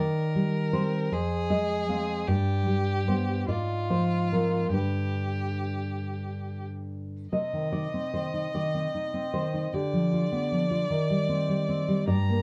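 Yearning and solemn, this excerpt of a romantic duo in C minor drifts in a rubato 6/8 at 45-52 BPM, a focused, vibrato-rich bowed violin singing the melody over a full-bodied, thumb-plucked nylon-string guitar whose finger squeaks peek through, moving from Cm/Eb through Fm and G before a second section opens on Cm at 7.3 s, all set in a dark, small-room production.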